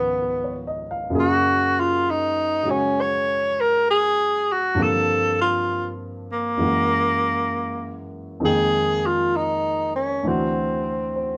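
A slow, swung 4/4 pulse carries this melancholic, intimate jazz ballad, a short fragment cut from a longer piece. The breathy tenor saxophone takes the melody from the start to 11.4 seconds, its subtone voice shaped by a light vibrato, soft attacks and scooped notes. Beneath it, a baby grand piano accompanies throughout with a present, polished tone and short sustain, moving through rich extended harmonies such as Db13, Gm11 and Fm11 before landing on D7. A moderate club reverb surrounds the pair, and the overall production is dark and warm, with the saxophone mixed louder than the piano.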